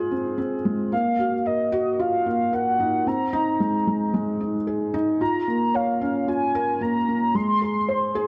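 A felt-muted upright piano carries the riff from the start, its thick-felt tone dark and mellow with the soft clatter of its action audible, touched by digital delay and set up front. From 0.9 s a velvety synth lead joins with a sustained, detuned melody, its soft-attack tone thickened by chorus and vibrato, in this intimate, moving electronica excerpt at 112 BPM in Bb minor. The chords move from Fm through Ebmadd9, Abadd9 and Bbm inside a moderate studio reverb that surrounds the short section.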